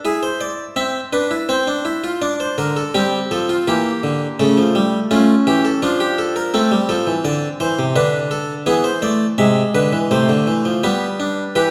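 A solo harpsichord opens this short cut from a baroque-style three-part fugue in D minor, moving at 83 BPM in a straight 3/4 with a driving yet contemplative mood. The instrument's single set of strings has a bright, plucked, full French-style character, close-miked and up front in a dry tone, while a recital hall's reverb lingers around it as if heard from further back in the room. After a brief opening, a new passage settles on D minor at 2.2 seconds and travels through chords such as A7/C#, Am and E7 before arriving on G at 10.8 seconds, and the harpsichord stops at 11.7 seconds.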